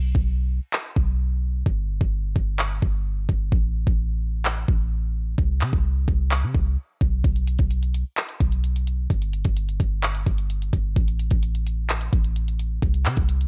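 Hip hop in a trap style, this dark, menacing fragment of a longer piece moves at 129 BPM in 4/4 with a half-time feel, tuned slightly sharp to A4 = 445 Hz. A deep, boomy 808-style bass sits up front from the start, its sine tone carrying a noise layer and a fast attack that decays into a mellow low end between G1 and C3. The electronic trap kit comes in at 0.1 seconds with a knocking kick, bright hi-hats and handclaps, placed just as far forward as the bass. The opening 7.2 seconds form a break before the groove carries on to the close at 13.5 seconds. The sound is dry and gritty, with transformer saturation and cassette tape coloring a raw hardware recording that has little reverb.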